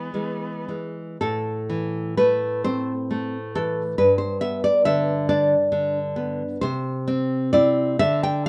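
Lightly reverberant, this fragment of a solemn, yearning romantic duo in A minor unfolds in a rubato 6/8 at roughly 36-47 BPM in dotted quarters. A rich, focused bowed cello sounds a faint, smooth-topped B3 with vibrato for only the first 0.6 s, while the up-front, dark, woody fingerpicked nylon-string guitar, with its old-string classical tone, plays from the start and carries on alone through 8.5 s across a range from G2 to G5, moving from E to A minor, G and C.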